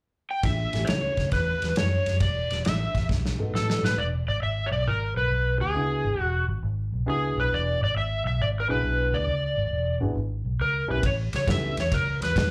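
A swung 136 BPM shuffle in 4/4 drives this rollicking, swaggering electric blues in E mixolydian, cut from a longer live club set heard through the venue's PA with little reverb. Up front, an overdriven slide guitar carries the melody with slapback echo over a round, foam-muted vintage electric bass, while a mellow, woody upright piano, slightly detuned and with audible action noise, sits lower in the mix, also touched by slapback. A tight, rolled-off soul drum kit with dark cymbals plays until a fill ending at 4.0 seconds, then returns at 11.0 seconds as the chords move from A7 through B7 to E9 and A9.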